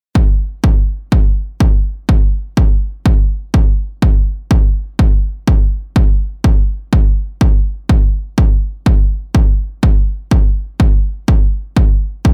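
A dry, up-front techno excerpt with little reverb, dark and dramatic in mood, built on a straight 4/4 pulse. A single electronic kick drum carries it from 0.2 to 12.3 seconds: layered and punchy, with a tape-warm body and the close character of a small room.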